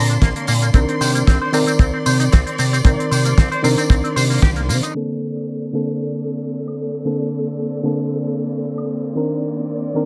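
This feel-good, groovy nu-disco excerpt in Bb major moves at 114 BPM with a light 16th-note swing, built around a reedy, bright electric piano comping through tape echo. Lush bowed strings with vibrato hold sustained chords beneath it, pumping under sidechain compression and a low-pass filter. A clean, picked electric guitar plays a riff through an envelope filter, subtle chorus and tape echo, while a glossy, nasal chorused synth bass with a quick filter pluck anchors the low end. A damped 70s kit brings a fat snare, hi-hat, tambourine and woodblock, and a dry, tight kick sits up front. The harmony moves between Bbmaj9 and Cm9. After a band accent at 4.4 s, the kick stops at 4.5 s, and by 5.0 s the guitar and bass have dropped away, leaving keys, strings and kit as a filter sweep carries the string section through the second half, all in a small room with light reverb.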